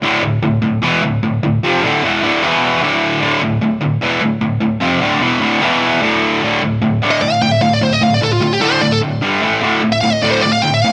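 Lightly reverberant and up front, this aggressive, relentless metal piece in D minor at 150 BPM opens in a half-time feel, with a bright, double-tracked, distorted electric guitar picking a low riff that moves between D minor and E and D power chords. At 7.1 seconds a warm, high-gain lead guitar enters with a picked, distorted solo melody in a higher range, over the riff's shift through G and A before it returns to D by 9.6 seconds. The passage is cut from a longer piece.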